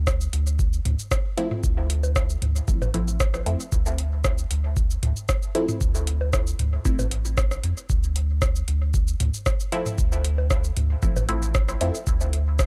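A straight 4/4 groove drives this nocturnal dub techno excerpt: an overdriven electronic kick drum and a booming analog drum machine with metallic hi-hats, rim clicks and shaker, both re-recorded in a small room. Beneath them sits a round, dark analog bass, up front with sidechain pumping, while tape-warm electronic toms and bongos join at 0.9 seconds, also pumping. From 1.4 seconds a muted, detuned chord stab with a short filter pluck moves through phaser, sidechain pumping and dub echo, and the dry, gritty recording sits in a digital ambience.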